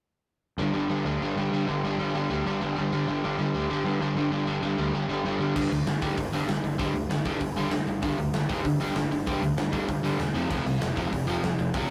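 A driving, straight four-beat pulse in 4/4 pushes this raw, angry punk rock fragment, cut from a longer piece. A crunchy, overdriven electric guitar riff, picked and double-tracked, sits up front from 0.6 seconds, moving from a G5 power chord to F5 near the end. Beneath it, a growly, fuzz-soaked picked electric bass holds the low end, sounding both direct and amped. At 5.6 seconds a big, acoustic rock kit crashes in, with a punchy kick, a medium-tuned snare, hi-hat and bright crash cymbals ringing in a roomy space. The whole take has the rough feel of a rehearsal room, with light reverb and saturation thickening the sound.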